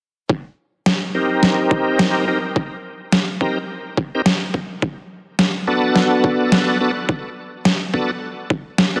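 Gritty, funky glitch hop at 106 BPM with a swung 16th-note feel, where a thumpy, pitched-down electronic kick from 0.3 s and a gritty, medium-tuned overdriven snare from 0.9 s sit up front beneath shouting tonewheel organ stabs entering at 1.1 s, their full, bright tone carrying chorus vibrato, slow rotary speaker, sidechain pumping, delay and a filter sweep over Cm7 moving to a rootless Gmaj7, all bathed in a lush hall reverb and a dense, heavily limited master in this short cut from a longer piece.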